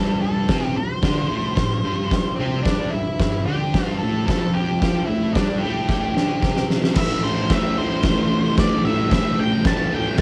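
A doubled, fuzzed-out rhythm guitar grinds out a thick riff up front while a darker octave-fuzz lead guitar carries the melody from the first moment, setting a swaggering, menacing garage rock mood in A minor at 111 BPM. At 0.5 seconds an oversized, low-tuned acoustic drum kit crashes in with a boomy kick, fat snare, hi-hat and crash, its big pumping room sound saturated and gritty. A drum fill at 5.9 seconds leads into a new section at 7.0 seconds in this short cut from a longer home cassette recording with light reverb.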